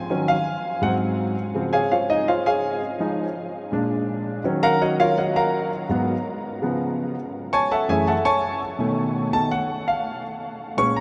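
A vast, echoing space surrounds this recording, its long reverb tail lingering for seconds and its top end softened into a dark haze. Inside that cavernous wash sits a solo concert grand piano, heard up front and intimate, with audible action noise and a deep, natural bass. This is lively, sophisticated jazz in a straight 4/4 feel, cut from a longer piece and running 11 seconds. The piano carries everything alone, ranging from Gb2 up to Db6. Its harmony moves through rich extended chords such as Ebm7, Ab7, Dbmaj7, Ebm9 and Gbm9, arriving at Cb7#11 at 8.8 seconds before settling on Bbm7.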